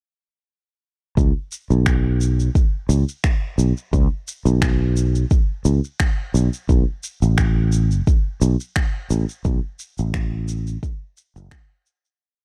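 A warm, smooth sunset chillout piece, this short track moves at an unhurried 87 BPM in 4/4, with a gentle 16th-note swing and tuning set to A4 = 441 Hz. A sustaining fretless electric bass carries a syncopated riff low in the register between F#1 and C#2, its direct, growly and punchy tone sitting up front with a touch of tube saturation. Alongside it, a deep, soft electronic kick drum, layered and re-recorded in a small room, also sits close to the listener. An electronic shaker and finger snaps add a light lounge beat further back in the mix, giving the groove that begins at 1.2 seconds an easy lilt. The production is dark and dry, with little reverb, and the whole piece fades out from 8.5 seconds until it ends at 12.2 seconds.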